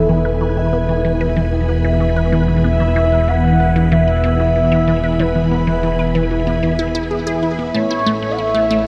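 Expansive and cosmic, this ambient passage in E major at 94 BPM, cut from a longer piece, sets a round, horn-like synth lead with phaser, lush chorus and analog delay over a swirling, vintage string machine holding chords, ringing fingerpicked concert harp arpeggios with delay, a fat, saturated analog bass sitting up front on E, a very quiet pulsing gated texture and a juicy, squelchy blip pluck riff that enters at 0.1 s, the whole mix sitting in a huge ambient reverb as the harmony moves from E to A at 7.7 s.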